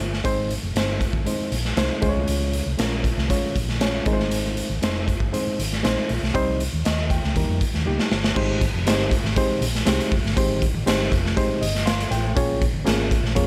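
The sound is lightly reverberant, with a raw garage drum kit pushed up front in a bright, pumping stone room. This uptempo 1960s-style soul excerpt moves at 119 BPM in a straight 4/4 in Ab major, with a danceable, warm mood. The drums are saturated and gritty with a rolled-off top, a punchy kick, a medium-tuned snare, hi-hat and crash cymbal. A hollow-body short-scale electric bass, played with the fingers, sits low and round with a dark, amped tone. A reedy electric piano, lightly overdriven through its built-in speakers and dressed in plate reverb, supplies a barky, bright accompaniment over chords moving from Ab through Db, Cm and Eb. A drum fill at 7.9 seconds leads into a new section on Abmaj7 at 8.4 seconds, and the electric piano adds its own fill at 11.6 seconds before the harmony settles on Bbm7.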